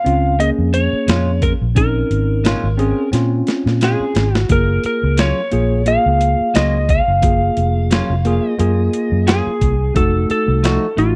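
A straight-eighth groove at 88 BPM in 4/4 with a light 16th-note swing drives this brooding, soulful Bb minor soul-blues excerpt, where a gritty, pitched-down boom bap sampler kit with a thumpy kick and high-tuned snare (fill from 3.1 to 4.5 seconds) sits up front beside a round, foam-muted fingered bass, while a slightly broken-up slide guitar played with fingerpicks carries the melody over a bright tine electric piano heard through its built-in speakers, and a clean picked guitar adds quiet stabs with tape echo from 1.1 seconds as the chords move from Bbm7 to Gbmaj7 to F7b9 in a dry, close 1970s-style studio sound.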